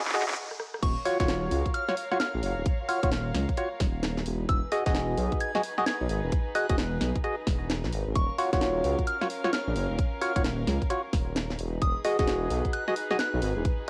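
This skippy, late-night two-step garage excerpt opens with a brief drum fill from the garage kit. Beneath it, an intimate chamber violin section holds soft, bowed chords with light vibrato, and a hollow, organ-like stab punches through chorus, phaser and analog delay. After a short break, the drop lands at 0.8 s, bringing in three new parts: a tight, tape-warm electronic kick up front, a deep, rumbling detuned saw bass that pumps under sidechain, and a gentle, warbling FM bell melody sitting high above. The kit adds a cracking snare, handclaps, hi-hat, rim clicks and crash cymbal in a small room, and the swung sixteenths give the groove its skip. The harmony alternates between Ebm9 and Emaj9, while the strings also pump under sidechain. Light reverb and the grain of a home cassette recording give the track a lo-fi, after-hours feel.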